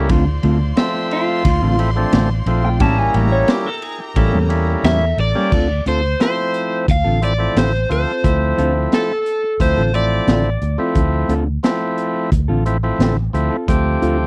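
Over a straight-eighth groove, a gritty breakbeat kit with dark cymbals and a high-tuned snare pairs with a round, punchy foam-muted bass, driving this brooding, soulful blues excerpt from a longer piece. An up-front, lightly overdriven percussive tonewheel organ and a dark, clean guitar playing harmonic-tremolo stabs accompany throughout. Until 5.5 seconds, a lo-fi, slightly broken-up guitar through a small old amp plays a second line over a brilliant horn section's tight sustained chords. From 4.9 to 10.9 seconds an overdriven semi-hollow guitar carries the melody, all in a dry, close 1970s-style studio sound.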